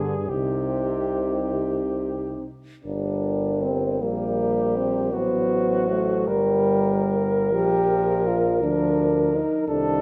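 A solemn, elegiac hymn for brass band opens with all five parts together: a mellow flugelhorn carries the melody with light vibrato, set back in the room, while a dark French horn section sings a second line in the background. Beneath them a warm, up-front euphonium and a soft-attacked, close-miked trombone fill out the accompaniment, and a distant tuba with vibrato anchors the bass. Cut from a longer piece in 6/8 with rubato phrasing, it moves into a new section at 2.8 s, and the ensemble sits in a moderate scoring-stage reverb.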